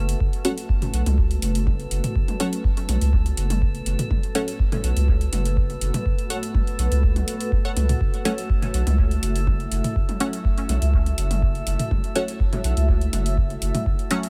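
A steady, straight 4/4 pulse at 123 BPM drives this nocturnal, meditative dub techno excerpt in F# minor, where a deep, tape-warm kick and round, dark analog bass sit up front beneath metallic hats, echoing small-room toms, a detuned pad and drifting glassy harmonics, all held on one F#m chord, while muted, filter-plucked dub chord stabs with phaser and cassette grit drop out between 4.5 and 8.3 seconds and a crisp wavetable stab riff glints in the background.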